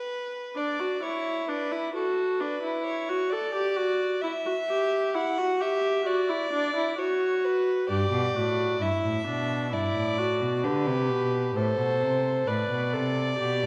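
In a straight 4/4 at 66 BPM, this stately, joyful excerpt of a baroque-style fugue for string quartet opens with a rich, lightly vibrato violin carrying the second line, joined at 0.6 seconds by a nasal, smooth-topped viola accompaniment and at 7.9 seconds by a dark cello bass, all three bowed up front with reedy gut-string period tone inside a wet scoring-stage reverb as the harmony moves from D through Emadd9 and G to D5/A.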